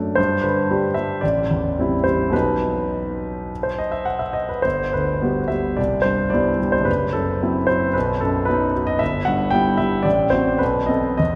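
Flexible rubato phrasing pulls and pushes against an underlying four-beat metre in this brooding, bittersweet romantic character piece for solo piano, a short cut from a longer work. The concert grand sits up front with a clear, intimate tone, deep bass and long sustain, and the clatter of the instrument's action is audible beneath the notes. Its range stretches from low F#1 up to G5, and the piano plays alone from 0.0 to 11.4 seconds. Harmonies shift from G through Am7 and B, then turn to Gmaj7, Cmaj7 and a shadowed F#m7b5. The passage closes on a tense B7b9 at 10.6 seconds. A wet church reverb with a long tail surrounds the polished piano, giving it the air of a church or concert hall.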